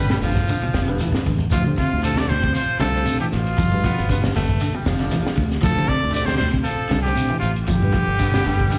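A clear, up-front trumpet leads this intense, driving afrobeat excerpt, its light vibrato carrying the melody over a loose, swung sixteenth-note feel. Punchy, forceful baritone and tenor saxophones with an edgy bite play a second line beneath it, the tenor sitting further back, and all three horns share a slapback echo, as do the clean tine electric piano and the twangy electric guitar. The guitar, picked and slightly broken-up, plays arpeggios in the background through spring reverb, while the electric piano adds accompaniment from behind. A round, foam-muted fingered bass anchors the low end, and a crunchy breakbeat kit with a high-tuned snare, punchy kick and rolled-off top drives the groove, punctuated by a drum fill from 0.5 to 1.5 seconds. Low-tuned congas and a grainy, distant shekere fill out the percussion as the harmony moves between G7 and Dm7, all heard as a live gig through a venue PA with club reverb.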